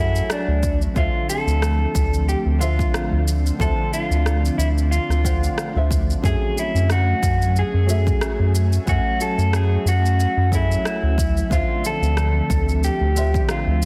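A relaxed 91 BPM groove in 4/4 with a light 16th-note swing sets this sunset chillout excerpt in motion: an overdriven, layered electronic shaker and rim click arrive at 0.2 seconds and a punchy, overdriven electronic kick joins at 0.6 seconds, both bathed in studio reverb. Up front sits a round, deep analog bass with a fast filter pluck. Above it a dark, boxy, thumb-plucked flamenco guitar with audible finger squeak and delay plays alongside an ethereal, warbling vintage pad of detuned unison chords with ensemble chorus. A slightly broken-up, lo-fi electric guitar carries the melody through tape echo over shifts between F#m9 and Dm9, tuned a touch low to A4 = 437 Hz, all within a dense, heavily limited modern master.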